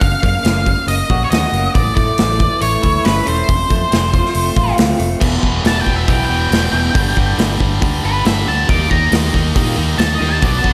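From the first beat, a dark octave-fuzz lead guitar carries the melody over lo-fi, tremolo-laced arpeggios from an electric guitar through a small old amp, a growly fingered bass and a punchy, up-front rock kit in this brooding quiet-loud alternative rock passage at 138 BPM, until at 5.2 seconds a bright, high-gain distorted guitar riff arrives as the lead breaks into a solo, with slapback echo on the guitars and lush hall reverb giving a big arena sound.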